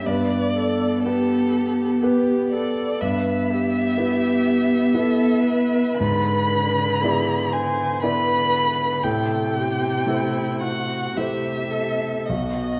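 A piano quartet begins together in this solemn, melancholic slow romantic movement in E minor, moving in a rubato 3/4 at 53-63 BPM, with a warm, expressive violin singing the melody up front with vibrato and portamento, a rich, focused cello carrying a second line, a clear grand piano whose action noise is audible, and a dark, woody viola adding soft-edged accompaniment, the whole heard in the wet reverb of a recital hall as part of a longer piece.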